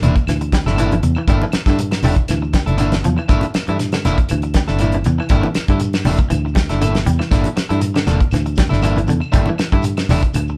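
A straight 4/4 groove at 119 BPM drives this hypnotic, intense afrobeat passage, cut from a longer piece and resting on a single Gm69 chord in G dorian. Up front, a damped 70s drum kit of hi-hat, kick drum and snare drum sounds dry, with a fat snare and a tight kick, while a fingered electric bass, round and foam-muted, anchors the low end. Thick-skinned, medium-tuned congas sit back in a small room, a very quiet shekere adds a grainy, saturated texture, and woody claves join at 0.3 s from a distant, large-room space in the background. Two electric guitars at the edge of break-up fill the middle: one plays slightly broken-up picked stabs, and the other plays twangy, scooped arpeggios further back, colored by a harmonic tremolo. The band plays live in one room under a moderate studio reverb, which gives the ensemble a shared sense of space.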